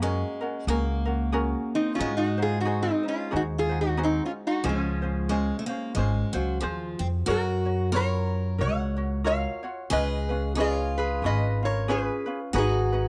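A relaxed swing at 91 BPM in 4/4, with lightly swung eighths, sets a sunny, dreamy Hawaiian groove in this short passage cut from a longer piece. The lap resonator guitar carries the melody up front, its slide tone metallic and nasal as it is played with fingerpicks. Beneath it, a bright, boxy parlour-style steel-string guitar picks a second line, while a light, fingerpicked ukulele fills in the accompaniment. The pizzicato upright bass sits up front too, woody and warm on steel strings. The harmony starts in Db major, moving from Gbadd9 through Ab7 to Dbmaj7, then shifts to F# major at 7.3 s with F#maj7, C#7 and G#m7. The sound is dry and close, in the manner of a small 1970s studio room.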